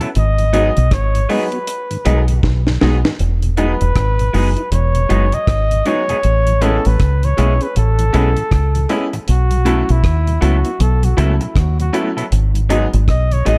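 A sweet, smooth lovers rock reggae groove at 79 BPM in E major opens on clear grand piano chords, a soft, flute-like tonewheel organ with rotary speaker and key click, slightly broken-up stabs from a guitar through a small old amp, and a dry, deep reggae kit with a high-tuned snare and tight kick, whose fill from 2.4 to 3.2 seconds leads into the flugelhorn solo. A round, punchy dub bass sits up front, while the breathy flugelhorn, touched with tape echo, plays intimate, jazz-style lines with scooped notes and light vibrato over chords moving from G#m7 through Emaj7, Amaj7 and B7sus4. The dark, swung production carries light studio reverb and sounds cut from a longer piece.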